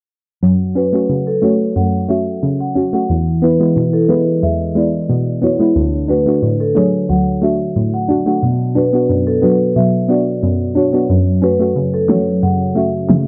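Set in a small, lightly reverberant room with a low-pass filter softening the top, this bouncy, tough dancehall fragment layers a hollow, chorused square-wave pluck and dark, fingerpicked nylon-string guitar arpeggios under a percussive hard-mallet marimba melody, with a fat, layered electronic snare and finger snaps joining at 12.1 seconds.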